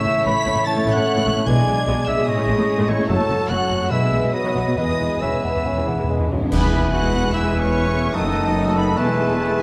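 Dramatic and restless, this excerpt from a fast romantic orchestral movement surges forward with a flexible, rubato feel. A bright, close violin section carries the melody high above the orchestra, while a mellow cor anglais, a rich background violin section, an airy silver flute and a clarinet weave second lines beneath it. A mellow bassoon and a very quiet, clear viola section fill the accompaniment, a dark, distant French horn section holds sustained chords, and a ringing concert harp adds soft arpeggios, all anchored by smooth cellos and distant double basses. Timpani struck with soft mallets enter at 1.5 seconds and play a fill from 4.8 seconds that leads into a full-band accent at 6.5 seconds, where a vintage-toned trumpet joins with stabs. Dark cymbals and concert bass drum add weight through the middle, and a moderate scoring-stage reverb gives the whole a dusky, enveloping sound.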